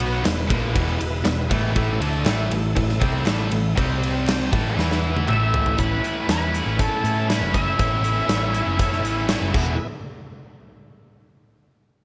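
Classic rock with a sunny, driving mood at 120 BPM in a straight 4/4, cut from a longer piece. A huge acoustic arena drum kit sits up front with a punchy kick, medium-tuned snare and bright cymbals in a hall sound, while a tight, double-tracked distorted guitar plays a picked riff alongside it and a dark, round hollow-body short-scale bass holds down the low end. In the background, a full, shouting tonewheel organ holds sustained chords through a slow rotary speaker with chorus vibrato, light overdrive, key click and plate reverb, and a crisp group handclap adds very quiet percussion from 0.3 to 5.4 seconds. The chords move from E through A5, C5 and E5, and a drum fill beginning at 4.8 seconds leads into a shift to Aadd9 at 5.8 seconds. An octave-fuzz lead guitar enters at 5.3 seconds with a warm, picked melody in a high register, and the passage closes on another drum fill and a return to E before the music drops out.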